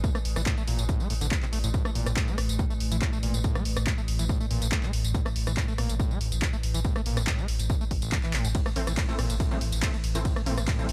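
Driving peak-time techno at 141 BPM, dark and relentless, built on a tape-warm electronic kick and punchy analog drum machine handclaps, hi-hat, ride, rim click and tambourine, with a deep saturated sub bass and a squelchy, distorted acid bass riff pumping under sidechain and dub echo, an eerie metallic FM drone warbling in the background, a drum fill at 8.3 seconds, and an aggressive, bright detuned rave stab entering at 8.8 seconds in this dry, short cut from a longer piece.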